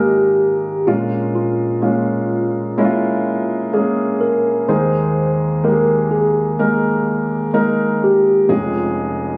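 Tender and heartfelt, this short pop fragment pairs a mellow tine electric piano, clean and direct with a phaser, carrying the melody against a concert grand piano whose open, up-front accompaniment reaches down into deep bass. Both parts play throughout, moving through Absus2, Bbm7 and Ebsus4 before settling on Db/F near 8.5 seconds. The sound is compressed and carries a light club reverb and studio ambience, captured on a phone in the room for an intimate, slightly casual feel.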